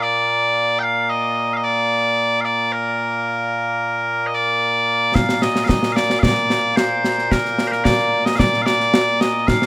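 A bright, piercing sound with light reverb opens this ceremonial, proud piece of Scottish pipe music in Bb major at 111 BPM in a straight 4/4, where loud, continuous bagpipes carry the melody up front from Bb2 to G5, playing solo until a close, acoustic concert snare drum and concert bass drum with bright cymbals join at 5.2 seconds for the repeated strain through 9.7 seconds.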